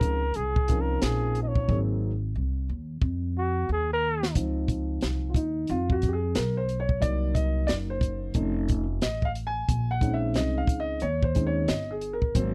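A breathy flugelhorn opens this relaxed jazz-hop excerpt in Db major at 90 BPM, playing a short, mellow solo with light vibrato and scooped notes that gives it a vintage jazz feel before it drops out at 4.3 seconds. Beneath it, a compact cocktail drum kit sits up front with a high-tuned snare, punchy kick and hi-hat, swinging the sixteenths and adding a drum fill between 1.7 and 4.4 seconds. A pizzicato upright bass with gut strings gives a woody, thumpy low end throughout. A dark concert grand piano accompanies from the start and takes over with a deep, mellow solo from 4.4 seconds to the end, moving through rich chords such as Bbm11, Dbmaj9, Cm7b5 and Faug7. The sound is dry and close, like an intimate 1970s studio session with little reverb, and the overall mood is warm and unhurried.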